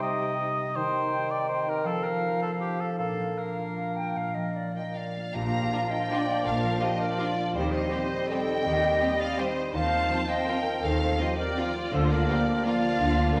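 Festive and elegant, this orchestral ballroom waltz in 3/4 sways with a rubato feel, opening on woodwinds and harp: an airy silver flute, an up-front cor anglais that drops out at 5.0 s, a dark, distant clarinet and a mellow bassoon in the background, all over ringing, fingerpicked harp arpeggios. At 4.8 s a lush violin section takes the melody with focused vibrato, and from 5.3 s violas, background cellos and distant double basses fill in beneath it, joined by a very quiet second violin section and a tight, smooth-topped French horn section holding sustained chords. A wet hall reverb surrounds the ensemble in this clip cut from a longer piece.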